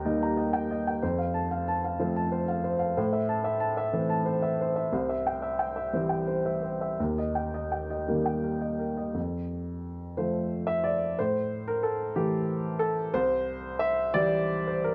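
An upright piano carries this short neoclassical minimalist piece alone, its warm, woody, natural tone sitting up front with a long sustain. The mood is intimate and tender, moving in 6/8 with a free, rubato feel that gives the phrasing room to breathe. The harmony drifts through Eb, F, Am and C before returning to Eb, and a second passage beginning at 9.2 seconds moves from F through A5 to C. The instrument is tuned to A4 = 436 Hz, and its range spans from deep bass notes around C2 up to Bb5. A light reverb adds a gentle sense of space around this brief fragment, cut from a longer work.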